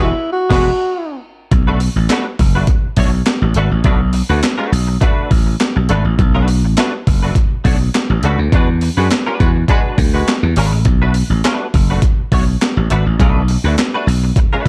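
Funk at 103 BPM in B dorian, cool and driving, this short cut opens on a band accent over E9, where a tight vintage horn section sounds briefly and a breathy, whispered alto saxophone carries into a break at 0.9 seconds, then settles onto Bm7. Growly, punchy slap bass and a gritty, overdriven breakbeat kit with a thumpy kick, snare, hi-hat, crash and handclaps sit up front, while a twangy clean electric guitar with ensemble chorus plays throughout. The background horns return at 9.0 seconds during a second E9 accent, and light digital reverb gives the mix a dark production.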